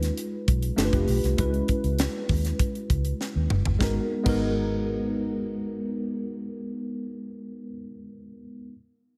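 Polished 1980s jazz-funk pop in G# minor at 99 BPM, slick and nocturnal, cut from a longer piece. A worn, slightly out-of-tune tine electric piano with analog chorus sits up front, moving through C#9, G9 and F#9sus4/C# before settling on G#m9 at 3.8 seconds, while a dark, round, foam-muted fingered electric bass holds the low end until 7.7 seconds. A tight funk drum kit with a high-tuned snare and gated reverb plays a fill at 3.2 seconds and stops at 4.4 seconds, all within a small room ambience.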